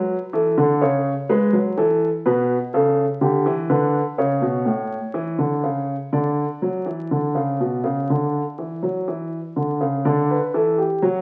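In a straight 4/4 at 62 BPM, this serious, contemplative baroque-style two-part invention in D major unfolds on a solo concert grand piano, heard alone from 0.0 to 11.2 s across a range of A2 to D5, moving through A, Em/B, A and D before a new section begins at 10.1 s. The piano sits up front with a warm, open tone, deep bass and long sustain. The piano is wrapped in a wet stone-room reverb and the crackle of a very old 78 rpm record, and this fragment is cut from a longer piece.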